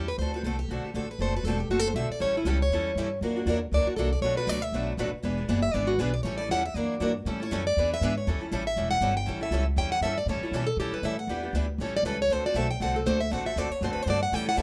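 Charming, lively jazz manouche cut from a longer piece, where a picked, plugged-in steel-string acoustic guitar carries the solo melody up front with a warm concert tone throughout. It is backed by a bright, boxy parlour guitar with fresh strings and audible finger squeak, a second old-stringed, woody parlour guitar entering at 2.2 s, and an up-front pizzicato upright bass, all set in a small room's moderate reverb.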